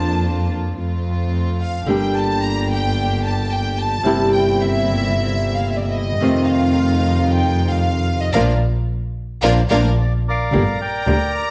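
An intimate, close-miked violin section bowing sul tasto with light vibrato carries the second line over fingerpicked warm flamenco guitar, floating soft-attack string stabs and an up-front bowed double bass with rich portamento in this passionate, dramatic rubato tango in Bb major at 111 BPM, cut from a longer piece, where the band lands an accent at 8.4 seconds on the Bb chord before a reedy, vintage-toned bandoneon takes the melody at 10.0 seconds, all set in a moderate large studio reverb.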